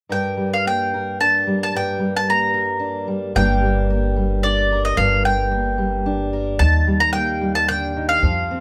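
Indie folk in a straight triple metre, stirring and bittersweet, cut from a longer piece with an arrangement that builds as it goes. A picked, double-strung mandolin carries the melody up front over a fingerpicked steel-string guitar with fresh strings and audible finger squeak, both sounding warm and close in a lightly reverberant room where the band plays live together. At 3.4 seconds a dark, woody pizzicato upright bass joins underneath, and the harmony moves from G minor to E-flat at 6.6 seconds.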